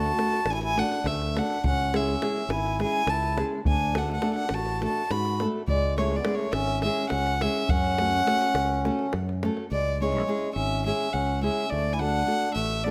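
Close, detailed microphones in a moderate recital-hall reverb capture this restless, fiery Balkan wedding-band excerpt in 7/8 at 208 BPM (eighths), where a rich violin with airy bow, light vibrato and gut-string tone carries the melody up front, a mellow, reedy, round accordion plays a full second line, a bright fingerpicked nylon-string guitar accompanies, a direct, growly fingered electric bass holds the low end, and a tight, dry davul sits in the background until 9.6 s, over chords moving among D, C#m and F#m.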